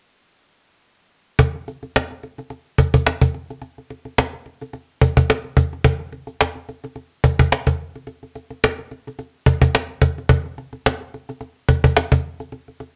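A 4/4 groove at 108 BPM with a 56% sixteenth-note swing drives this gritty, funky excerpt from a longer piece: a drum fill opens from 0.3 to 1.4 seconds, then a snappy, acoustic cajon with snares enters at 1.4 seconds, close, dry and up front, playing through to 12.9 seconds in a room touched by light reverb.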